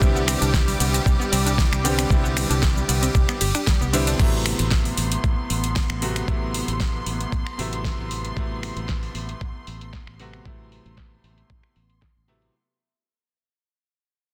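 Opening on a drop, this sleek, sensual nu-disco excerpt pairs a gritty, thumpy electronic kick up front with a layered, tape-warm pop drum kit of fat snare, metallic hi-hats, crash and ride cymbals, shaker and finger snaps, a dark, round fingered electric bass pumping under sidechain, brilliant grand piano accompaniment trailed by analog delay and rich bowed strings with smooth vibrato, while a background analog pluck arpeggio with chorus and tape echo stops at 4.2 s as the track begins fading out over a dense, dry, heavily limited master.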